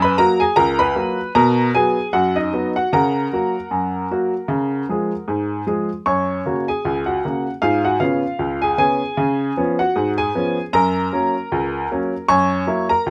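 A solo upright piano opens this short ragtime fragment, its woody, intimate tone sitting up front with the soft clatter of the action audible beneath the notes. The mood is playful and jaunty, set in a two-beat metre with a lilting swing on the sixteenth notes. The piano covers a broad span from deep bass to bright upper register, and its long sustain lets the harmonies ring between changes. The opening phrase moves between home and nearby chords before a second phrase begins at 6.1 seconds, leaning on dominant-seventh colour and ending on a seventh chord at 12.3 seconds as though poised to continue. Close, detailed miking and a light reverb give the performance a polished, present sound, and the clip ends at 13.1 seconds, cut from a longer piece.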